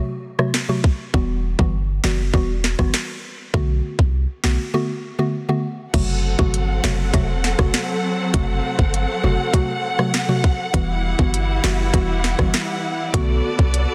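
A woody, round synth pluck with a mallet-like, percussive attack opens this sultry, tough dancehall excerpt, its mellow tone coloured by chorus and phaser as it outlines F#dim, Emadd9 and Bm7 chords. An electronic, produced drum kit arrives almost at once, putting a tight kick, sharp snare, smooth hi-hats, rim clicks and crash cymbal up front at a straight 100 BPM in 4/4. A deep, boomy 808-style bass with a dark sine tone and fast, decaying notes enters at 1.1 seconds and sits prominently under the groove. At 5.9 seconds a lush bowed string section joins with sustained chords, bringing vibrato, portamento and an expressive, smooth top that lifts the second section. Light reverb and digital ambience frame a dense, heavily limited modern master, and the recording is cut from a longer piece.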